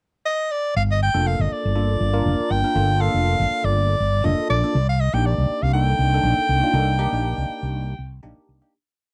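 A lightly swung 120 BPM groove in 4/4 drives this slick, short electric jazz fusion piece in G minor, where a breathy, whispered soprano saxophone enters at 0.3 seconds with scooped, motif-based call phrases, a round, punchy fretless bass sets a syncopated riff from 0.8 seconds, and a bell-like tine electric piano with phaser adds rootless, syncopated chord stabs over Gm9 and Cm9 before the close 1970s-style studio sound fades out from 6.7 seconds.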